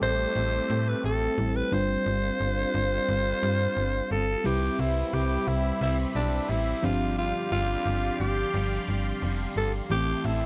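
A dry, close recording in the manner of a 1970s studio gives this short pop excerpt a nostalgic, glossy sheen at an unhurried, straight 4/4 pulse. Up front, a raspy, gritty alto saxophone carries the melody with bright vibrato and a slapback echo, matched in presence by a snappy FM bass with a metallic, digital attack. Beneath them, a mellow FM electric piano adds round, full-bodied chords with a warbling chorus, while a detuned sawtooth pad holds evolving, resonant sustained chords that open through a filter swell. At 4.4 seconds an overdriven, double-tracked electric guitar enters in the background, dark and picked, wrapped in lush chorus. The harmony moves from Am7 to G7sus4, then brightens to Cmaj7 before returning through G7sus4 to Am7.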